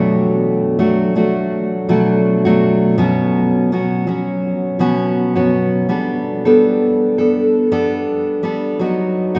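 Pop with a wistful, tender mood, this brief excerpt features a fingerpicked steel-string dreadnought acoustic guitar playing alone, its dark, full-bodied tone placed up front with an audible finger squeak. The harmony moves from Bm7 to F#sus4/B, then shifts at 5.9 seconds to Gadd9 before landing on B. A long, wet cathedral reverb gives the guitar the spacious sound of a church or concert hall.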